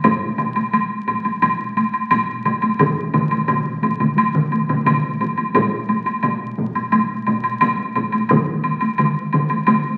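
Japanese traditional taiko drum ensemble music drives forward with a powerful, straight 4/4 pulse at 87 BPM in this short cut from a longer piece. Several taiko ensemble parts sound from the start. One is struck with heavy sticks and sits close and dry, another is compressed and saturated, and a third played with hard sticks has a vintage, band-limited tone. A woodblock, woody and up front, runs the full length alongside them. At 2.8 seconds a further taiko ensemble enters, heavy-sticked and placed in a small room, while one of the earlier taiko parts drops out at 8.1 seconds. The whole recording carries a large, wet studio reverb and the crackle of a very old 78 rpm record.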